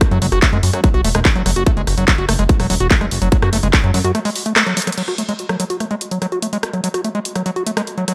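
A distorted, layered electronic kick hits straight away with a techno kit of crash cymbal, handclaps, rim clicks and warm hi-hats, opening this driving, psychedelic trance fragment on a drop at 145 BPM in 4/4, centered on F# minor over an F#5 power chord. Just after, a squelchy, gritty acid bass riff enters with sidechain pumping and delay, joined by a punchy, funky analog bass whose wave-folded sawtooth, square and sine tones give a plucked, fast-decaying bite. The kick cuts out at 3.8 seconds and the plucky bass stops at 4.1, leaving a brief gap filled by a band accent and a drum fill. From 5.0 seconds the harmony falls away as the resonant acid riff carries on under a filter sweep, with the drum kit pushing ahead alongside it. Both drum parts sit up front with large-room character, and light reverb and digital ambience surround the mix.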